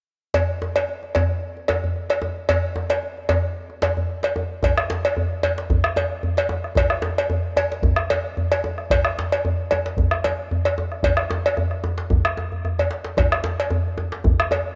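West African traditional drumming with an earthy, driving mood at 112 BPM in 4/4, with a light swing on the sixteenths, cut from a longer piece. A metallic cowbell and a tight, cracking djembe played with soft hands sit up front from 0.3 seconds, both compressed and saturated, and a deep, dark bombo with a small-room sound joins at 4.6 seconds. A drum fill arrives at 12.5 seconds, and a moderate plate reverb lends the ensemble a lingering tail.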